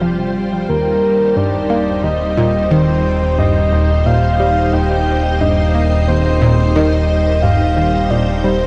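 A soft, octave-layered synth lead carries the melody from 0.7 s, its dark, rounded tone shaded with vibrato, chorus, tape echo and a shimmering reverb tail. This is ambient, sequencer-driven space music at 89 BPM in 4/4, cosmic and expansive in mood, cut from a longer piece and resting on Fsus2 before moving to Eb6. Beneath it, a bright analog pluck repeats a riff with a fast, decaying attack and a filter sweep, spread by chorus and tape echo. A vintage string machine holds lush, slow-blooming sustained chords through ensemble chorus and shimmer reverb, while a fat, nasal, saturated analog bass anchors the low end. An airy, breathy wind-like tuned noise texture sits far in the background, and a lush hall reverb with a 2.8-second decay bathes the whole mix.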